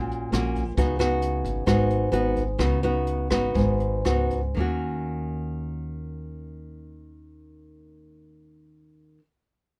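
Melancholic and wistful, this bossa nova fragment, cut from a longer piece, centers on an up-front, fingerpicked nylon-string guitar with a classical character and audible finger squeak, moving from a rootless Ebm7 to Db9sus4 and back. A woody, thumpy pizzicato upright bass on steel strings sits beneath it, while a distant, roomy brush kit with a rolled-off top, boomy kick, hi-hat and rim click plays until 4.4 seconds, as the music slows down between 0.8 and 4.6 seconds. The production is dark and warm, with little reverb.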